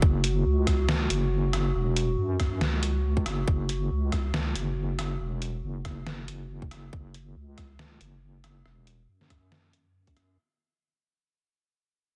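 A brooding, cavernous deep dubstep excerpt opens with a tight, overdriven electronic kick up front, a heavy, saturated square-wave wobble bass with chorus, and a dark, detuned analog pad holding slow-attack chords under subtle chorus, joined at 0.2 seconds by a muffled, pitched-down trip hop sampler-style kit of hi-hat, rim click and snare, all in a swung half-time feel with light digital ambience and a dense, heavily limited master, fading out throughout.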